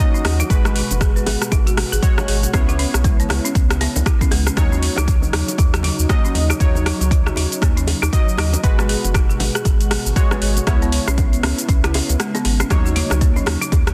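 Earthy and hypnotic afro house, cut from a longer piece, is built on an up-front, overdriven electronic kick and a round sine sub bass, with sidechain pumping on the bass, on detuned sawtooth key stabs with chorus and digital delay, on a mellow, chorused pad of sustained chords in the background, and on woody hard-mallet marimba arpeggios through delay; an overdriven afro-pop kit of metallic hi-hats, rim click and shaker swings on sixteenths beside very quiet high-tuned bongos, and the kick drops out at 12.2 seconds before ringing congas enter at 12.7 seconds, all under a dense, heavily limited master with light reverb.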